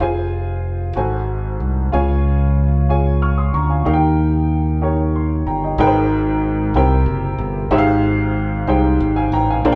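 A live-in-one-room sound with a moderate, large studio reverb gives this brief slow gospel passage a hopeful, reverent air at 62 BPM in a straight 6/8, in Ab major. A woody, slightly detuned upright piano with a vintage character carries the accompaniment up front throughout, while a bright, direct fingered electric bass holds the low end across both sections. The harmony moves from Fm through Ab7b9, Db and Eb, then turns at 5.8 seconds to Abmaj9, C7 and Fm9/Ab.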